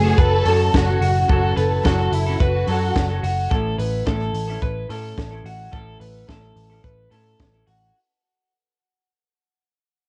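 Youthful and bright, this jangly indie pop excerpt at 108 BPM in A major moves from F#m to A, with a punchy, dry cocktail drum kit and a dark, round, foam-muted picked bass up front, a twangy, slightly broken-up guitar picking arpeggios through a small old amp beside a clean semi-hollow electric guitar, while a lush, bowed violin section with vibrato and a very quiet, flute-like hollow pad both drop away at 3.5 seconds, all inside light small-room reverb, a cassette home-recording sound and a fade-out running throughout.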